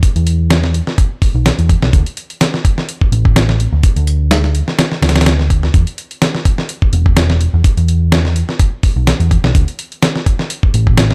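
Funky and gritty, this breakbeat cut rides a 126 BPM groove in 4/4 with a light 16th-note swing, running for about 11.1 seconds of a longer piece. A dusty soul sampler-style drum kit sits up front with a thumpy kick, fat snare and hi-hat, its compressed, gritty sound touched by small room reverb. Alongside it a hollow-body short-scale picked electric bass stays low between E1 and E2, its dark, round, amped tone equally forward, all wrapped in a digital ambience.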